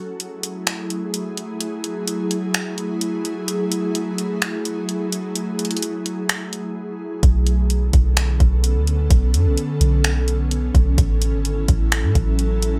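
An airy, ethereal pad opens this hazy cloud-rap excerpt, holding sustained F#m9 chords in F# minor with a slow attack, detuned sawtooth and triangle layers in unison, ensemble chorus, built-in reverb and sidechain pumping. A smooth, tape-warm, electronic R&B drum kit comes in almost at once, setting a half-time feel at 128 BPM in 4/4 with finger snaps, warm hi-hats and a soft kick. For the first stretch the beat and pad carry the track alone, the mellow chords drifting over the produced groove. At 7.2 seconds a deep, round 808-style bass arrives, its sine tone striking quickly and then decaying into darkness beneath the harmony as it moves to Bm9. The progression settles on an A6 chord at 11.0 seconds, with pad, drums and bass all sitting up front in a light reverb that keeps the mood dreamy and suspended.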